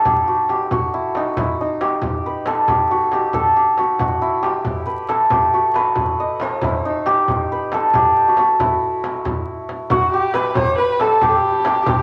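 A steady 6/8 pulse at 91 beats per minute, counted in dotted quarters, carries this hypnotic, longing piece of Persian modal ensemble music, cut from a longer work. The hammered santur leads from the opening moment, shimmering and ringing up front as it carries the melody between D#4 and D#5. A small, bright frame drum sits close and dry beside a tombak that sounds tight and warm yet distant, as if set back in a large room. At 9.9 seconds the music turns to a new section as a dark, woody kamancheh enters as a second line: one bowed player, close and up front, with vibrato, a soft attack and gliding portamento. A wet studio reverb lends the ensemble a gentle halo, while vinyl crackle runs beneath the recording.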